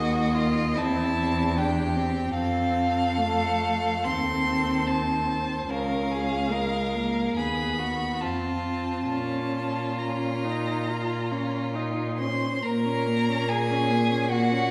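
A first violin carries the lyrical melody up front, its bowed tone rich with vibrato yet faintly distant, above a second violin's smooth, even line in this slow, rubato romantic movement for string quartet in Bb minor at around 67-77 BPM. The viola adds a gentle, expressive accompaniment with soft attacks and portamento, while a focused cello anchors the bass, all heard within the lingering reverb of a recital hall. Cut from a longer piece, the passage moves into a new section at 12.6 seconds.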